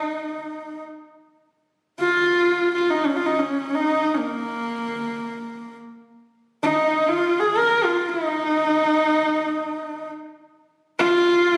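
Vast and solemn, this short excerpt of Mongolian folk music unfolds in free time, with a single horsehead fiddle playing alone from 0.0 to 11.6 seconds between Bb3 and Bb4, tuned to A4 = 439 Hz. The bowed horsehair strings sound rich and husky, with vibrato and portamento colouring a focused, close tone that sits up front. A phone captured the performance in the room, and a recital-hall reverb with a 1.6-second decay surrounds the fiddle.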